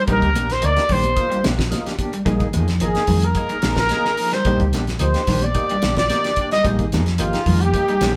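A wet stone room with a reverb of 1.0 s surrounds this short afrobeat cut, played live by a band in one room at 110 BPM in 4/4 with a straight, driving, funky feel. Two trumpets carry the top: a breathy, mellow one with a soft attack and light vibrato sits present and intimate on the melody, while a brilliant one with scooped notes plays a second line further back. Underneath, a dark, round hollow-body short-scale bass is fingered prominently, and a cloth-damped, thuddy kit with a fat snare, tight kick and rolled-off top plays hi-hat, kick and snare alongside ringing, high-tuned congas struck with soft hands. In the background, a slightly broken-up, twangy electric guitar picks arpeggios, a clean electric guitar adds stabs through tremolo, and a full, percussive tonewheel organ, lightly overdriven through a slow rotary speaker with chorus vibrato, fills out the accompaniment. The harmony moves between Ebmaj7/Bb and Bb7sus4 across the whole 8.2 seconds.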